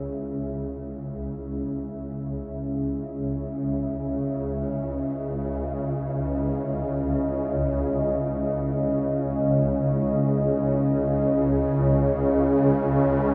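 Soaked in dreamy plate reverb with its top end rolled off, this cavernous, ominous dark ambient drone, cut from a longer piece, fades in throughout as a swarming, tense, granular drone sits up front in the low register beneath a deep, moody, detuned sawtooth pad with chorus holding sustained chords.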